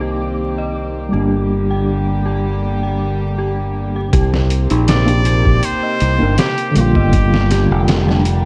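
A dark, cinematic trip hop excerpt at 80 BPM opens on vinyl crackle, a clean tine electric piano with medium tremolo, sampler grit and tape echo, reedy bowed chamber strings, an eerie, inharmonic detuned synth bell playing arpeggios through chorus and tremolo, a growly, up-front fingered electric bass and a faint flickering granular texture over Cm7 and Gm, until a compressed, pitched-down sampler-style drum kit with a thumpy kick enters at 4.1 seconds and a nasal, straight-muted jazz trumpet takes a smooth, vibrato-laden melody with tape echo from 4.9 seconds.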